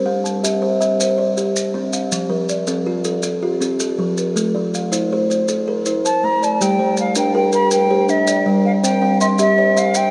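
Southern African traditional music in an mbira-style interlocking cycle at 107 BPM in a straight 12/8, where two kalimbas weave ringing arpeggios from the start over a C, F, Am progression, one woody and up front, the other hollow and vintage, over grainy maracas entering at 0.3 seconds, before a bright, airy baroque flute takes the melody at 6.1 seconds as the harmony moves to Gm and back to C, all bathed in a huge, echoing reverb that gives this hypnotic fragment of a longer piece a vast sense of space.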